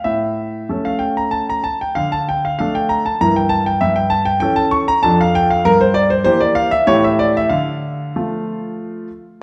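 A clear, smooth concert grand piano with deep bass and a vintage, up-front presence plays alone from 0.0 to 9.1 s in this restless, elegant classical-period sonatina in D minor, taken from a longer piece and moving at 96 BPM in 3/4 with a rubato feel, through chords such as Edim/G, A7/G and Dm/F to a Dm close, all set in a wet recital hall reverb with a dark production.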